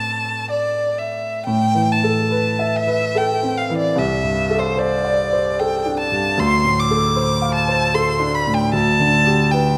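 Wistful and hazy, this impressionist classical duo for violin and grand piano drifts in 3/4 at a rubato pace of roughly 60 to 77 BPM in A minor. The violin carries the melody from the first moment, a single bowed voice with vibrato that sounds rich, smooth and even, placed close and up front. The concert grand piano supplies the accompaniment throughout, its warm tone open and deep in the bass, with long sustain letting the harmonies linger. The chords move from Am9 through Amadd9 and Csus2 to Dm7, closing on a rootless Em7/D at 8.7 seconds. A recital hall reverb with a 1.7-second decay surrounds the pair, and the passage, cut from a longer piece, ends at 9.8 seconds.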